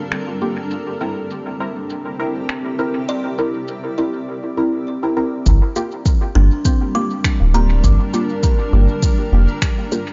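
The soft, round dub sub bass stands out, arriving up front at 5.5 s together with a deep, layered electronic kick drum to anchor this meditative ambient dub excerpt at 101 BPM in G dorian, lightly swung and moving from Gm7 to C7 and back. From the start, a cloudy, evolving granular pad blurs sustained chords through its own reverb, while a woody, hollow-box kalimba plays arpeggios through tape echo with a filter sweep across its opening 5.5 seconds. Muted, phased chord stabs with lush chorus and dub echo join early alongside low-pass-filtered electronic finger snaps and shaker, all within a mellow, lightly reverberant sound that keeps the highs rolled off.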